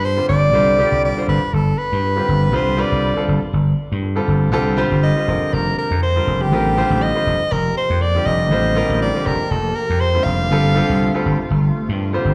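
A clear, lightly vibratoed soprano saxophone with a subtone leads this slick, bright swung jazz excerpt at 120 BPM, its line carrying slapback and tape echo over a brilliant concert grand piano with slapback echo, a punchy, growly electric slap bass, and, from 7.5 s, a swirling, detuned sawtooth pad with phaser and chorus sitting in the background, as the harmony moves between G9sus4 and F9sus4 and the sax drops out at 11.2 s, all heard as a live gig through the venue's PA with club reverb.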